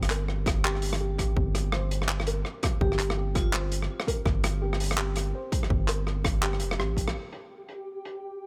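A dark, intimate small-room sound with light reverb frames this spacious, cinematic excerpt of half-time drum and bass at 166 BPM, swung on the 16ths. A muted, felt-softened upright piano plays dub-echoed arpeggios over a deep, sine-toned 808-style bass, while a crunchy, saturated breakbeat kit of handclaps, hi-hat and rim click, its hats and snare low-pass filtered, sits up front and a heavy electronic kick enters at 0.5 seconds. A metallic vibraphone with slow motor vibrato rings briefly in the background around 2.8 seconds, and after a drum fill and band accent at 7.1 seconds, a grainy, flickering detuned texture with its own reverb closes the passage.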